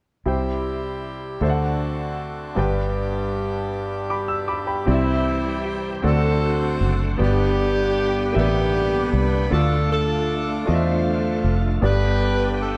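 A tight, warm saxophone section carries the melody from 4.9 seconds in this hopeful, soulful gospel excerpt, a slow 6/8 in C major at 52 BPM, its jazz-style vibrato sitting up front alongside a round, dark, foam-muted electric bass. A clear, intimate grand piano with audible action noise accompanies throughout, while a reedy, hollow accordion holds sustained chords at the opening and then gives way at 4.9 seconds to a shouting, lightly overdriven tonewheel organ with fast rotary speaker and chorus vibrato in the background. Moderate concert hall reverb surrounds the parts as the harmony moves through C, D7, G and Dm.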